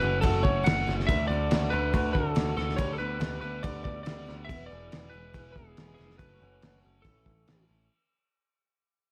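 An open-road, warm feel runs through this short fading excerpt of folk rock and heartland rock, cut from a longer piece and moving in a straight 4/4. A lightly driven lead guitar carries the melody up front, its tone slightly broken-up and compressed. Beneath it, a picked electric bass sits punchy and direct, while a bright, full-bodied jumbo steel-string acoustic guitar is picked in the background. The cloth-damped drum kit enters at 0.2 seconds with a thuddy, muffled, lo-fi character, pairing a fat snare and tight kick with dark cymbals and a gritty, rolled-off top. A pedal harmonium adds reedy, breathing sustained chords from 1.1 seconds, very quiet and dry, as the harmony moves from F#m through D, G/D and E, returns to F#m, and then settles on A under light studio reverb.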